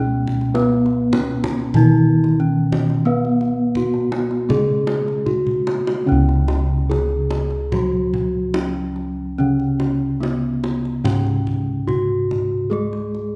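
Javanese gamelan in a ceremonial, shimmering mood, cut from a longer piece. An up-front bronze metallophone rings out the melody under a wooden mallet, while a second metallophone plays the lower accompaniment with paired tuning that produces shimmering beats. Round, dark, smooth bossed gongs carry the bass, and a tight, distant kendang struck with hard hands supplies the percussion, breaking into a drum fill from 5.2 to 6.1 seconds as the piece moves into its second section, all set in a moderate recital-hall reverb.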